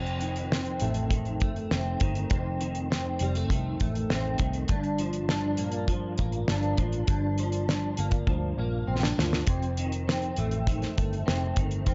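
A softly rolled-off sound with light studio reverb frames this lonely, hazy slice of indie and bedroom pop, cut from a longer piece. At 100 BPM in a straight 4/4, a clean, up-front electric guitar carries the accompaniment, its picked tone thickened by ensemble chorus and a vibrato effect. Beneath it, a dark, foam-muted picked bass supplies a round, amped low end. A damped 70s drum kit sits dry and polished, with a fat snare, tight kick and hi-hat, and breaks into a fill from 8.3 to 9.5 seconds. The harmony drifts from F7 to Gm7 and back to F7, keeping the atmosphere lonely and hazy.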